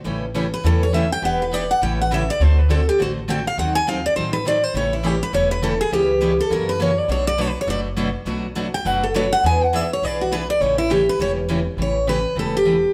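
Set in a moderate stone room where the band plays live together, this fragment of charming, swinging jazz manouche at 205 BPM in A mixolydian has bright picked steel-string guitars, two picking out the chords while a third carries the melody and a guitar solo runs until 11.8 s, over a woody, thumpy gut-string upright bass as the changes move from A7 through D#dim7 and F#7 to Bm7 and E7.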